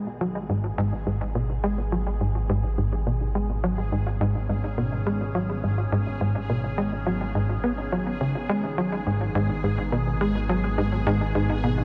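Mysterious and hypnotic, this ambient, sequencer-driven space music piece, cut from a longer work, moves at 105 BPM in G# minor around a punchy, up-front sawtooth sequencer bass riff with ring modulation, lush chorus and tape echo, over a pulse-width-modulated analog drone on G#1 entering at 0.6 s, while a detuned, morphing wavetable pad of sustained chords and a resonant, bubbling stepped-filter texture both fade in across the full 11.8 s, all bathed in a huge ambient reverb.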